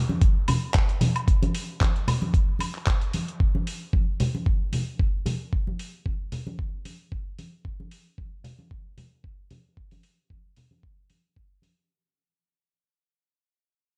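Feel-good and sunny, this short nu-disco excerpt moves at 113 BPM in 4/4 with a light 16th-note swing, built entirely from percussion. Up-front acoustic congas with a small-room tone enter at 0.1 seconds, joined at 0.2 seconds by a thumpy, compressed electronic kick and a dusty, gritty sampler-style soul kit of handclaps, hi-hat and woodblock. The dark production carries little reverb, and the whole passage fades out across its length.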